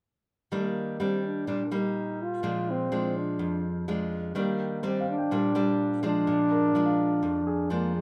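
A dark, breathy trombone carries the melody up front with scooped notes and a smooth top in a jazz style, over fingerpicked classical nylon-string guitar, and from 4.8 seconds a warm, deep-bassed concert grand piano joins this romantic, sophisticated bossa nova at 125 BPM in Eb major, which moves between Ebmaj7 and Bb7 in light reverb.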